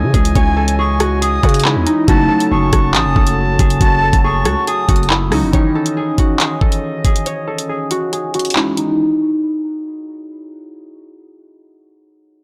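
A half-time drill groove in 4/4 drives this ominous, menacing hip hop excerpt, with an electronic kit of knocking kick, brilliant hi-hats, handclaps and rim clicks sitting up front beside a growling, buzzy 808-style bass. A fingerpicked, ringing concert harp with delay carries the melody, while glassy, detuned digital keys with chorus, a soft-attack classical brass ensemble holding sustained chords, and a reedy, airy silver flute with delay playing a second line fill out the arrangement. At 5.5 seconds the bass drops out as a filter sweep begins, a break follows at 7.3 seconds, and from 9.0 seconds the harp rings on alone, heard in a small, blown-out, overdriven room.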